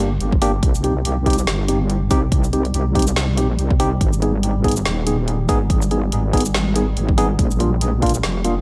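A heavy, detuned sawtooth wobble bass sits up front in this brooding deep dubstep excerpt at 142 BPM with a swung, half-time feel, joined by clean tine electric piano stabs through dub echo, a deep house kit with a woody snare, dark hi-hats and shaker from 0.2 s, a layered electronic kick from 0.3 s, and a moody, chorused ambient pad in the background, over chords of Gm, Cm, Abm and Bb.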